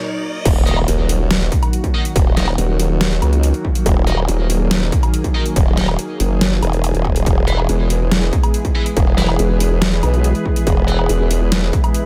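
Dry and loud, this cut from a longer heavy wobble dubstep track hits with menacing aggression in a half-time feel. A background riser and swell open it, with a granular cloud pad sounding briefly beneath, before the drop lands at 0.5 seconds with an impact. The distorted, tape-warm electronic kick sits up front, layered with an overdriven dubstep kit of deep snare, bright hats, crash cymbal and woodblock. Two formant-filtered wobble basses of sawtooth and sine carry the low end, one saturated and both compressed with chorus, while a lush, detuned unison pad holds thick sustained chords that pump against the sidechain, moving from Ebm to E at 7.3 seconds. High-gain, double-tracked guitar stabs sit lower in the mix with distortion and digital delay, and the blurred, wave-folded cloud pad returns in the background for the final seconds.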